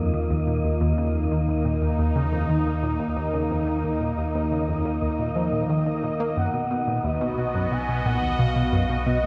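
Expansive and hypnotic, this excerpt of ambient, sequencer-driven space music in Eb minor at 89 BPM rests a bright, resonant pad with chorus and shimmer reverb over a tight, detuned sequenced synth riff with phaser and delay, a round analog bass and a breathy, wind-like tuned noise texture, all moving from Ebsus2 to B at 6.4 seconds, where a smooth, expressive synth lead with vibrato enters in a dark production on a wet scoring stage.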